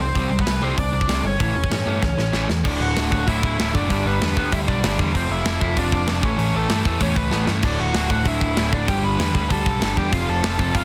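A straight 4/4 punk rock drive, rowdy and energetic, is joined by the up-front metal drum kit at 0.2 seconds, with a tight, softly clipped kick, a medium-tuned snare and bright cymbals, and fills at 2.0 and 7.3 seconds. A growly, punchy picked bass and two overdriven rhythm guitars, one dark and one crunchy and warm in the background, churn out the riff beneath a bright, biting lead guitar melody. The sound is dry, dense and heavily limited in this snippet cut from a longer piece.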